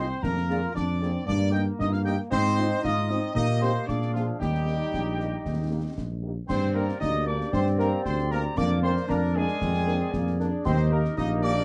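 A punchy, up-front tuba anchors this spirited, festive military-style march for wind band in 2/4, under a clear trumpet section carrying the melody while a roomy euphonium, a mellow woodwind section and a pure, close-miked piccolo with vibrato weave second lines. A distant French horn section adds dark accompaniment and tight trombones hold sustained chords, with concert snare, bass drum and clash cymbals entering at 0.2 seconds in the background. Cut from a longer piece, it moves from its opening passage to a new section at 6.5 seconds, all set in light reverb with a dusky, warm production.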